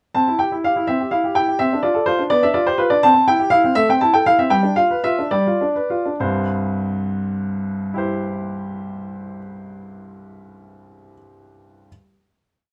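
A bright grand piano opens alone on a C major chord, playing a playful, cheerful classical-period sonatina in 6/8 with a single-line melody over a broken-chord bass, the tempo moving freely between 66 and 85 BPM in dotted quarters. The brilliant, open, up-front piano, ranging from C2 to A5 in light reverb, carries a short theme that slows from 2.3 seconds before settling on a final C chord at 6.2 seconds and ringing to the close of this complete piece.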